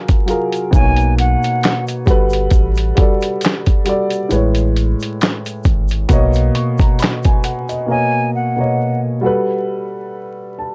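A 4/4 groove with swung sixteenths comes from a compressed, pitched-down sampler drum kit, its muffled, thumpy kick, medium-tuned snare, hi-hat and handclaps sitting up front, while a grainy egg shaker stays tucked in the background. This short cut from a longer lo-fi hip hop piece feels cosy and dreamy as it moves through major-ninth chords. A dark, woody upright piano carries the accompaniment from start to finish, intimate and vintage in character, with audible action noise and a cassette-tape colour. Beneath it, a round, sine-like sub bass holds deep, sustained notes, and a concert flute with a pure, straight tone and crisp attack offers a brief phrase near the start and another once the drums stop at 7.9 seconds. The overall sound is dry and gritty, with vinyl crackle and little reverb.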